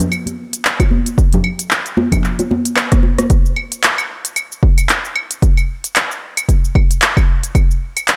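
A downtempo groove at 113 BPM in 4/4 with swung sixteenths opens on a layered deep house drum kit of claves, handclaps, smooth hi-hat, rim click and shaker alongside close, ringing congas and bongos played with soft hands. A punchy electronic kick joins at 0.8 seconds, and after a drum fill the hand percussion drops out at 3.3 seconds, leaving the up-front kit and kick to carry the earthy, hypnotic mood through a digital ambience until the kick falls away at 7.7 seconds and the kit plays on to the end of this short cut.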